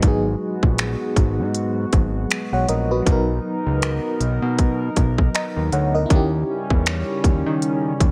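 A trap drum kit sits up front with a hard-clipped kick, crisp hi-hat and finger snaps, swinging the 16ths at a slow 79 BPM in this longing, sensual contemporary R&B excerpt in G# minor. Underneath, a fat, saturated analog bass with a plucky filter attack plays alongside a warbling, vintage FM electric piano carrying tremolo and phaser. A shimmering, chorused pulse-width pad holds sustained chords through G#m7, Bmaj7 and D#7b9, all set in a digital ambience.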